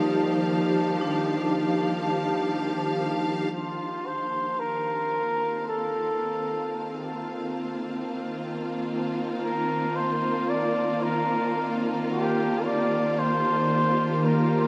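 Bathed in a huge, wet reverb, this luminous ambient excerpt opens on a lush, bowed string section holding sustained chords up front, with a ringing, metallic vibraphone struck by hard mallets playing delayed arpeggios until 5.4 seconds, and a mellow, warbling analog drone murmuring in the background. At 3.5 seconds a warm, distant flugelhorn takes up a classical-style solo melody through delay as the strings fade in, and the drone returns at 13.1 seconds beneath the closing chords.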